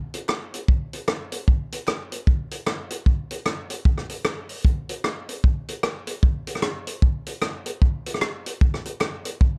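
A vintage acoustic drum kit opens this joyful, cheerful ska fragment with swung hi-hat, rim clicks and a punchy kick, sitting up front in a small natural room with a rolled-off top, while a hollow group handclap enters at 0.3 seconds far back in a large room, all within a dark, dry production that runs just under 10 seconds.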